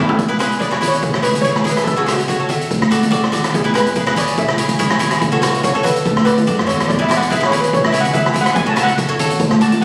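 A phone-in-the-room recording with light studio reverb and compression catches this bouncy, carefree calypso cut from a longer piece, where a drum fill opens on a street-band kit with a boomy kick up front, a bright, picked cavaquinho and woody, thumpy pizzicato upright bass play alongside ringing, high-tuned congas played with soft hands, and from 0.6 seconds a shimmering steel pan struck with hard rubber sticks carries an airy solo over a cycling E, C#m, F#m/C# and D progression.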